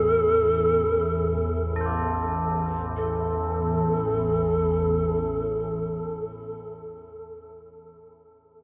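Haunting and spacious, this free-time world meditation piece in A minor pentatonic sets a pure, crisply chiffed pan flute with tape echo and vibrato over a warbling, organ-like pad drone with ensemble chorus, while mellow, solemn tubular bells enter at 1.8 seconds, all bathed in a huge dark reverb in a short cut from a longer work.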